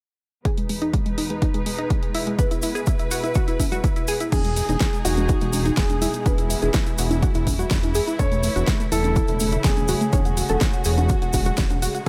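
A punchy, overdriven electronic kick sits up front in this uplifting, expansive progressive house excerpt at 124 BPM in a straight 4/4, entering at 0.5 seconds together with a layered deep house kit with a fat, overdriven snare, hi-hat and crash cymbal. A glassy, crystalline wavetable pluck spins detuned arpeggios through chorus, delay, ring modulation and a filter sweep, while a studio string section holds smooth, intimate bowed chords under a low-pass filter, both pumping with the sidechain. A grainy, close cabasa slips into the background at 2.4 seconds, followed by congas and woodblock with their own pumping. At 4.3 seconds a natural-sounding grand piano with a deep low end brings in a melody with delay, alongside a thick, detuned sawtooth bass that sits on a low E with a saturated, evolving filter pluck. The harmony moves from G#m over E to E, A over E and F#madd9 over E, all in a dry, close mix.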